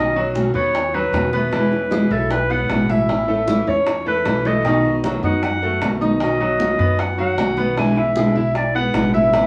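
A straight 4/4 Cuban son and guajira groove sets a relaxed, sunny mood in this short cut from a longer piece, with a clear, vintage-toned clarinet up front carrying the melody in classical style over full-bodied fingerpicked nylon-string guitar, brilliant short-sustained grand piano arpeggios, woody pizzicato upright bass, high-tuned congas struck with hard hands in the background from 0.2 seconds, and round, low-tuned bongos played with soft hands from 0.4 seconds, the band heard together live in a small room with a wet studio ambience.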